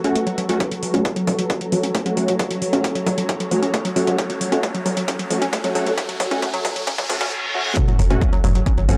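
An aggressive, thick rave stab, chorused and smeared with tape echo and sidechain pumping, drives this short cut of hypnotic peak-time techno. It plays over a warbling, lo-fi dusty pluck riff, a mellow granular cloud pad, a very quiet swarming drone and techno drums with metallic hats and toms. A punchy electronic kick enters at 0.6 s as filter sweeps and a riser build through a drum fill and reverse cymbal; the drop lands at 7.8 s with an impact, and a dark, detuned sequencer bass sits up front from 8.0 s, all in a dry, gritty hardware sound with background swells and a sub drop.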